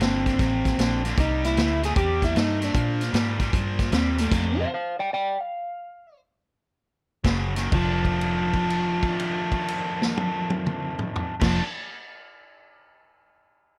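A slightly broken-up electric guitar sits up front, its fingered melody coated in lush chorus as it carries this soulful, gritty electric blues shuffle in F mixolydian. Underneath, a bright, overdriven picked guitar drives a low riff, joined by a round, foam-muted fingered bass with an amped tone and a vintage drum kit with a punchy kick, medium-tuned snare, dark cymbals and a rolled-off top. The groove swings in 4/4 at roughly 122-153 BPM, moving through F69, C69 and Bb5 before the band stops at about 4.3 seconds while the tempo slows, leaving the lead guitar alone. The rhythm section returns at 7.2 seconds on a Gb5 chord, and the music settles onto a long held note over F6 from 7.7 seconds until about 11.4 seconds, near the end of this cut-from-a-longer-piece fragment. Light reverb gives the whole a warm, close, vintage studio feel.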